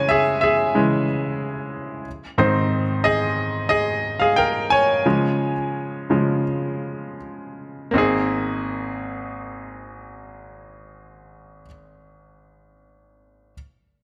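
A brilliant, polished grand piano opens this hopeful pop fragment in Ab major, sitting up front with a short sustain as it moves from Dbm to Abadd9 and Db at roughly 78-92 BPM in a straight 4/4. The piano plays alone and slows down between 2.4 and 7.9 seconds, then settles back on Abadd9 as a new section begins at 7.9 seconds. A wet, large studio reverb with a hint of small-room ambience gives the short passage a spacious feel.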